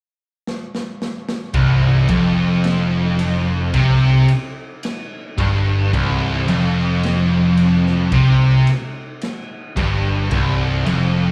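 Heard as a live gig through a club PA with roomy reverb, this hypnotic, sludgy stoner and doom metal excerpt opens with a gritty, boomy garage drum kit playing a fill from 0.5 s. At 1.5 s two fuzz guitars enter in the background, one warm and one dark, alongside a growly, punchy picked bass, and at 1.6 s a bright, double-tracked high-gain guitar with slapback echo joins as the riff settles on a C5 chord.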